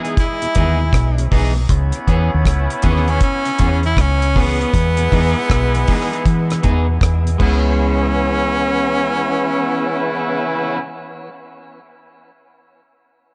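A breathy, close-miked tenor saxophone carries the melody up front in this serious, hypnotic roots reggae piece, its edgy tone shaded with vibrato and trailing dub echo from 0.2 seconds. It sits over a slow 79 BPM groove in 4/4 with a swung sixteenth feel, in C# minor and tuned slightly below standard pitch. A deep, round fingered electric bass enters at 0.6 seconds, dark and punchy with a foam-muted attack. It stands prominent alongside a dry, deep drum kit of tight kick, hi-hat, rim click and crash cymbal, which drops out at 7.6 seconds. A clear, tight vintage horn section plays a second line with light vibrato and dub echo. A clean, bright picked electric guitar adds lush chorus and echo, while a lightly overdriven tonewheel organ with key click and tape echo hums in the background. The chords alternate between Emaj7 and C#m7 in a small, lightly reverberant room, and the recording is cut from a longer piece.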